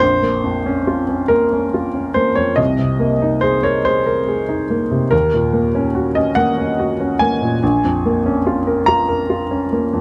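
A warm upright piano, heard solo and up front, carries this brief neoclassical minimalist passage cut from a longer piece. Its tone is woody and slightly detuned, with audible action noise that lends the playing a close, intimate character. Set in Bb minor and 6/8, the music moves at a slow 48 BPM with a rubato feel, giving it a reflective, unhurried quality. The harmony travels from Bbm through Abadd9/C and Ebm7 before returning to Bbm at 7.6 seconds, while the piano spans a range from Bb1 to Bb5. A moderate small room ambience surrounds the instrument, keeping the sound natural and personal.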